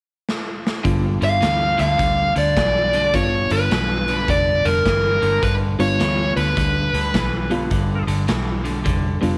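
Electric blues shuffle at 105 BPM in G mixolydian, rollicking yet laid-back, this short excerpt opens with a drum fill from 0.3 seconds on a raw garage kit whose punchy kick, medium-tuned snare and hi-hat sound gritty and saturated in a pumping stone room. At 0.8 seconds the band settles onto a G7 chord, with an electric guitar at the edge of break-up playing a picked, compressed riff between G2 and E3, slightly broken-up in tone. A bright reed electric piano supplies accompaniment, its worn, slightly out-of-tune voice coming through built-in speakers with light overdrive and harmonic tremolo. A vintage fingered electric bass, foam-muted and round, anchors the bottom end with an amped, dusky weight. Sitting up front from 1.2 to 8.0 seconds, a dark, smooth lead guitar carries the melody with overdrive, while light reverb and a small room ambience frame the whole band.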